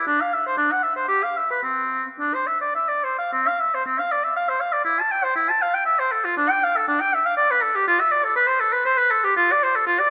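A lone, clear oboe opens this brief passage from a baroque-style classical fantasia, moving in a flowing yet grave triple metre with a free, rubato feel across a range from C4 to A5. Its opening phrase gives way to a new section at 3.3 seconds, and the unaccompanied line carries on until the cut at 10.1 seconds. The oboe sits up front in a roomy concert hall whose moderate reverb lends the solo a slightly distant glow.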